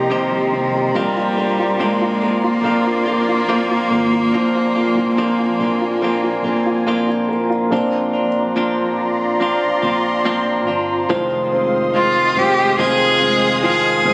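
A heartfelt, hopeful pop ballad at 71 BPM in a straight 4/4, with a rich, bowed cello carrying the melody from 0.0 to 6.9 seconds and returning at 12.0 seconds over a clear grand piano with audible action noise, an airy, detuned sawtooth pad holding chorused chords, twangy clean electric guitar arpeggios recorded direct, and a round fretless electric bass touched with lush chorus, all moving from Cm7 and Bbadd9 toward Fm7 in a lush hall reverb, captured on a phone in the room so the top end is dulled.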